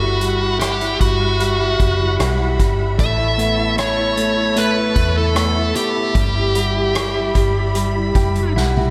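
This pop ballad excerpt moves at a slow 75 BPM in a straight 4/4, carrying a hopeful, emotional mood through chords of Emadd9/G, Aadd9 and back to Emadd9/G. Up front, a dark, overdriven lead guitar sings the melody between F#4 and E5, touched with slapback echo. Beneath it, an intimate concert grand piano with audible action noise, deep bass and long sustain plays the accompaniment, while a bowed studio string section holds sustained chords with expressive vibrato. A clean, compressed electric guitar picks arpeggios in the background through slapback echo and digital delay, and a foam-muted, round fingered electric bass gives a punchy low end. A distant, roomy soft-mallet drum kit with a punchy kick and medium-tuned snare joins at 0.2 seconds, the piano adds a fill from 7.7 seconds and the drums a brief fill at 8.6 seconds, all set in a lush hall reverb that gives a big arena sound.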